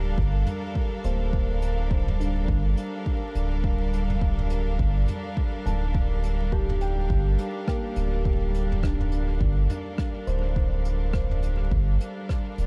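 Sustained chords from a clear string section with light vibrato, mellow arpeggios on a felt-muted upright piano with tape echo, and a round analog bass open this deep, meditative ambient dub fragment at 104 BPM in G minor, resting on a single Gm9 chord over swung sixteenths, as an overdriven electronic kick arrives at 0.2 seconds and a soft brush kit of hi-hat, rim click and toms joins at 0.5 seconds through dub echo, the whole mix sitting in a small, dark room with vinyl crackle.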